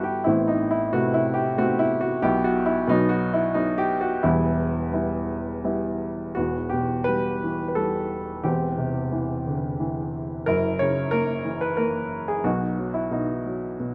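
Classical solo piano in a lyrical, rubato style, this brief excerpt cut from a longer piece moves in 3/4 at roughly 83-95 BPM with a bittersweet, brooding mood. A single upright piano carries everything from 0.0 to 13.9 seconds, its woody tone sitting up front and stretching from deep E1 in the bass to C#5 at the top. The opening passage leans on E harmonic minor, drifting from Amadd9 through E5/B to a B chord and settling on Em. From 6.4 seconds the music turns to plain E minor, passing through Cadd9/E and F#7 before coming to rest on B at 12.4 seconds. Close, detailed microphones and light reverb keep the instrument intimate, and the tuning sits a touch low at A4 = 438 Hz.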